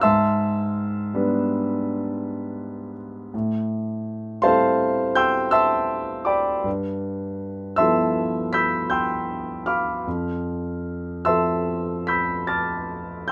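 In a rubato 9/8 at about 54 dotted-quarter beats per minute, with uneven beats, this hazy, luminous impressionist solo piano fragment, cut from a longer piece, drifts through Em7/Ab, Am7, G13 and Fmaj7 over its 13.3 seconds. A warm concert grand carries everything alone from F2 up to B6, its deep bass and long sustain giving the harmonies an open, ringing quality. The piano sits up front in light reverb.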